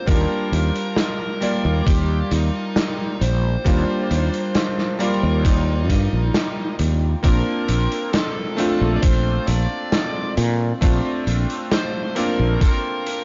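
A bright, clangy electric grand piano shimmering with lush chorus opens this woozy, faded vaporwave fragment at 67 BPM, alongside a dark, overdriven lead guitar melody carrying vintage 12-bit sampler grit and tape echo. A growly fretless bass sits up front with a thumpy, sampler-style electronic kick, while a raw garage kit adds hi-hat and a medium-tuned snare from a stone room. After a break at 6.3 seconds, the harmony moves from Ebmaj7 to Bbmaj7 at 7.2 seconds, all heard through a gritty, cassette-dulled recording in a small room.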